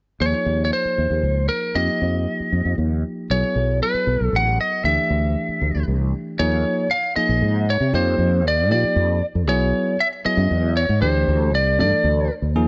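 A nocturnal, intense jazz excerpt in a straight-feel 6/8 opens at 0.2 seconds with a growly, punchy fretless electric bass up front under a chorus effect, a clean, bell-like tine electric piano comping through suspended chords, and a twangy, slightly broken-up lead guitar carrying the melody with slapback echo until 12.3 seconds, all set in light reverb with a dark, rolled-off top end.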